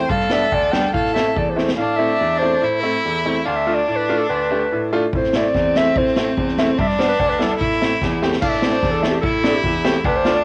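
Klezmer in 2/4 with a festive yet bittersweet mood, this piece steadily speeds up, and it opens partway through a longer work. A warm, classical-style clarinet carries the melody and takes a solo passage in the opening 1.8 seconds, while a single bowed violin plays a rich, expressive second line with vibrato and portamento. A bright, woody upright piano sits up front with the accompaniment, moving through G, A minor and D minor harmonies. A street-band drum kit with a boomy kick, medium-tuned snare and rolled-off top plays until 1.8 seconds, drops out, then returns at 5.1 seconds, with a fill at 8.0 seconds. Every part carries the grain of cassette tape, and the home recording has a moderate spring reverb and small room ambience.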